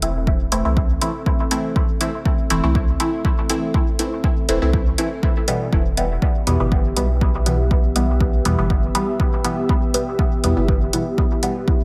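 A steady 4/4 pulse at 121 BPM with a light 16th-note swing drives this meditative, cavernous dub techno passage in A minor, cut from a longer piece, with an overdriven, punchy electronic kick sitting up front from 0.3 seconds and a layered electronic hi-hat ticking alongside. A round, sine-based sub bass pumps beneath muted, detuned sawtooth chord stabs that carry phaser and dub echo, while a dark, full-bodied analog pad with chorus and a slow attack holds sustained chords, the harmony moving from Am to Em at 5.7 seconds. Light digital ambience frames the mix, and the bass, stabs and pad all breathe with sidechain pumping.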